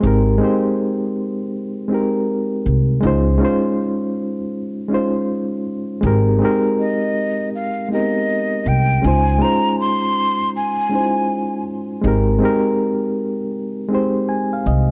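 Lo-fi hip hop in Ab major at 80 BPM, this mellow, cosy piece sways with a 64% swing on the sixteenths and moves gently between Abmaj9 and Dbmaj9 chords. A reedy electric piano plays accompaniment throughout, up front and clean, its fast tremolo shimmering through a low-pass filter. Beneath it, a pizzicato upright bass with gut strings gives a woody, thumpy, dark foundation for the full length. At 6.8 seconds a breathy jazz flute enters with the melody, its soft attack, vibrato and unsteady character lending a human, airy quality before it drops out at 11.6 seconds. A moderate spring reverb and the character of cassette tape wrap the sound in a cosy, vintage haze, and the recording is a section cut from a longer piece.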